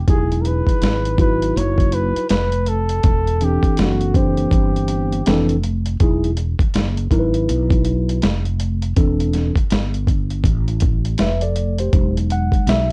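Dark, lightly reverberant production gives this short jazz-hop cut a warm, cool mood, with a swung sixteenth-note hip hop groove carried by a dusty, overdriven sampler-style drum kit with a thumpy kick, a medium-tuned snare and hi-hat. A round, punchy fretless electric bass with analog chorus sits low beneath a clean tine electric piano alternating Emaj9 and C69/E chords. A breathy, close-miked flugelhorn with light vibrato and plate reverb sings a jazz-style solo line before dropping out at 5.6 seconds.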